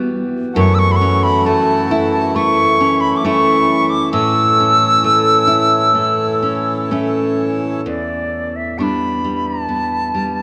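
Celtic folk slow air in E dorian, mournful and longing, drifting in rubato around 67 BPM: a bright wooden flute carries the melody up front with a pure tone, vibrato and tongued notes from 0.6 s, while a fingerpicked nylon-string guitar with fresh strings and audible finger squeak gives classical accompaniment throughout, and a reedy, nasal, breathing hand-pumped harmonium holds sustained chords until 7.8 s, the sound set in a long, wet cathedral reverb in this fragment of a longer piece.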